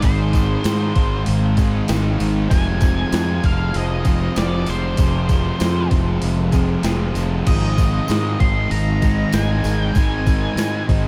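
Soaked in a dreamy cathedral reverb, this wistful rock excerpt in the shoegaze and dream pop vein sets a dark, distorted octave-fuzz lead guitar melody over riffs from a thick fuzz guitar, a raw garage guitar with reverse reverb and a double-tracked cranked stack guitar, with a round, overdriven fingered electric bass and a thumpy gated 80s digital drum machine up front, while a very quiet clean guitar plays arpeggios and a morphing wavetable pad with phaser and a jingly tambourine sit in the background as the chords move from Ab6 to Fm at 2.5 seconds and back to Ab6 at 7.5 seconds.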